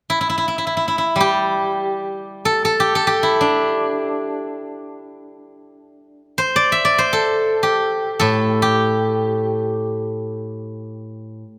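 Serene and flowing, this short passage cut from a longer piece belongs to the Chinese traditional solo plucked-string repertoire. A single steel-string zither carries it alone from 0.1 to 11.4 seconds, moving in free time through the G zhi mode across a span from A2 to E5. Played with fingerpicks, the instrument has a bright, silvery tone whose notes ring on, and it sits up front in the sound. A moderate concert hall reverb, lasting about 2.4 seconds, surrounds the acoustic zither with a sense of open space. The effect is serene and flowing, a glimpse of one section rather than a complete statement.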